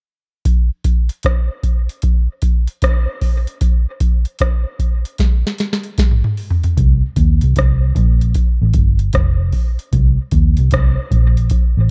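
A booming analog drum machine opens this meditative, swung dub reggae fragment with a deep kick, crisp snare, metallic hi-hats, rim clicks and toms sitting up front in a dark, dry mix, rolling through a drum fill from 5.2 seconds before a round, foam-muted vintage electric bass enters at 6.8 seconds to carry a low, amped line beneath the beat until the cut.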